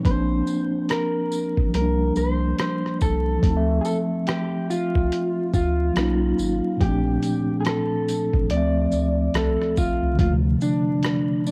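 Hazy and melancholic, this lo-fi hip hop clip in D minor moves at 71 BPM with a 16th-note swing, its chords drifting from Bb through C7sus4 and Dm7 to Bmaj7 and Bbmaj7 under a home-cassette haze of vinyl crackle and light reverb. A mellow, filtered tine electric piano and a dark, slightly broken-up fingered electric guitar melody sit up front beside a gritty, overdriven sampler-style drum kit with thumpy kick, hi-hat, rim click and shaker, while a deep, thick sub bass holds the low end until 10.6 seconds. A jingly, close tambourine joins faintly at 0.5 seconds.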